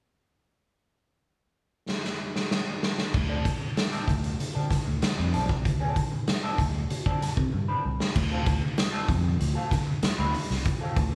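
Up-front, punchy garage drums with a medium-tuned snare and rolled-off top open this driving, sly funk cut with a fill at 1.9 seconds, before a clean, hollow-bodied semi-hollow electric guitar through wah and a dark, round, foam-muted vintage fingered bass settle onto a Dm7 groove at 3.1 seconds, while very quiet, close and dry low-tuned congas join at 8.2 seconds, all played live together in a moderately reverberant large studio.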